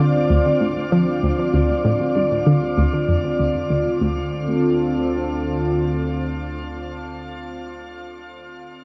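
In straight 4/4, this mysterious, expansive stretch of sequencer-driven space music is cut from a longer piece and opens on a Dm7 chord. A round, bright analog pluck plays a low riff until 4.3 s, its filter sweeping through the first 4.0 seconds, while an up-front, detuned, wave-folded resonant pad holds sustained chords until 7.2 s; both are thickened by chorus, with tape echo on the pluck and phaser on the pad. Beneath them, a warbling, vintage analog drone hums a pulse-width-modulated bass note in the background, and the mix is washed in a long, shimmering reverb.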